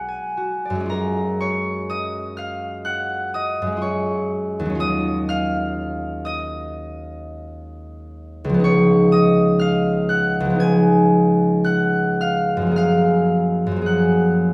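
A solo concert harp opens on a Bm6 chord before settling onto F#maj9 at 0.9 seconds, setting a dreamy, serene mood in F# major. This short classical passage, cut from a longer piece, moves in a free rubato at roughly 51-64 BPM in 4/4, with the harp tuned to A4 = 444 Hz. The fingerpicked harp sounds acoustic, warm and ringing, spanning B1 to G#6 and sitting up front as the only voice. Its harmony drifts through D#m9 and C#9 before returning to F#maj9 at 12.8 seconds, with the music continuing until 14.5 seconds. A wet scoring-stage reverb with a 1.6-second decay surrounds the harp, which is heard from further back in the room.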